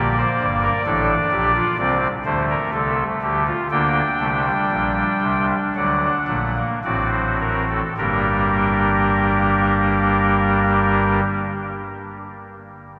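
Classical baroque-style four-part fugue in G minor, played by a solo pipe organ on a soft reed oboe stop with tremulant, its baroque voicing sitting up front and spanning G1 to G5 in a solemn yet driving mood at 52-67 BPM in 4/4. The tempo slows through the first 8.0 seconds as the harmony moves from G minor through Csus2 and back to G minor before reaching a D7, returning to G minor at 8.0 seconds for a new section. The organ stops at 11.2 seconds, and its sound blooms into a wet cathedral reverb with a long 5.4-second tail in this cut from a longer piece.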